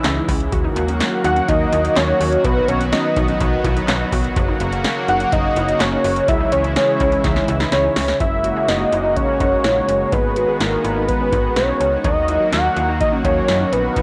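A fat, dark analog lead carries the melody from 1.2 s, its detuned sawtooth and square tones thickened by chorus, vibrato and tape echo, over a lush, bright unison pad holding sustained chords, a very quiet, wave-folded pluck spinning arpeggios, a snappy slap-like FM bass and a dry electro drum machine with deep kick, punchy snare, metallic hats and handclaps, in a nocturnal, driving 125 BPM synth-pop passage whose warbling home-cassette sound and moderate spring reverb lend it a homespun sheen, with a drum fill at 7.2 s leading into a new section at 8.2 s.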